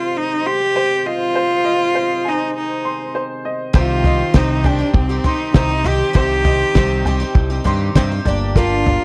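A bowed cello carries an intimate, airy melody over a worn, woody upright piano's arpeggios and a distant brass ensemble's dark sustained chords in this stirring, wistful indie folk in C minor at 100 BPM, and at 3.7 seconds a shimmering twelve-string acoustic guitar, a punchy picked electric bass and a cloth-damped, thuddy drum kit with a fat snare enter and fill out the dry, close 1970s-style sound as the chords move from Ab through Cm to Gm.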